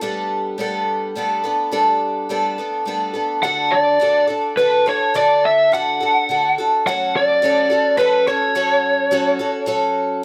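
Rock in 3/4 at 106 BPM with a straight feel and a jangly, warm mood, this short piece is cut from a longer work and tuned to A4 = 439 Hz. A picked twelve-string acoustic guitar carries the accompaniment throughout, its octave-doubled strings giving a shimmering, woody, boxy tone with the character of old strings, sitting up front in the mix. At 3.4 seconds the music moves into a new section as the harmony shifts from Gadd9 to D, and an electric lead guitar through a small cranked amp enters with the melody. That lead is dark and overdriven, picked high above the acoustic, sitting slightly louder and also up front. The chords move to F#m at 6.8 seconds, the lead drops out at 9.6 seconds, and light reverb gives the recording a modest sense of space.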